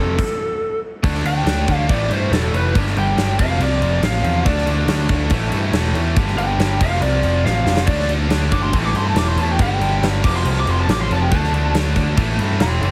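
Opening on an F chord with the dark, lo-fi lead guitar, two bright riff guitars and a growly, punchy bass, this menacing, driving hard rock excerpt in D minor at 140 BPM hits a stop at 0.2 seconds as the big, up-front drum kit with its tight kick and bright stone-room sound arrives. At 1.0 seconds a double-tracked distorted guitar joins the background riffing and the overdriven lead launches into a solo over a cycling D5, A5, G5, F progression, while the cranked stack guitar carries spring reverb. A drum fill at 7.5 seconds kicks the riff around again, all wrapped in a heavily compressed, radio-like sound with light reverb.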